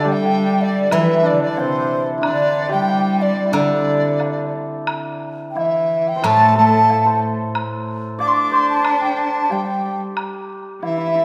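Bathed in a wet concert-hall reverb, this graceful, pastoral excerpt of Chinese traditional chamber music drifts in a rubato 2/4 as a distant, buzzing large dizi sings the melody with soft-attacked vibrato, joined on second lines by an airy xiao in the background, a shimmering hammered dulcimer and a focused, bowed cello, while a silvery steel-string zither played with fingerpicks supports them until 8.2 s and a woodblock sits quietly behind.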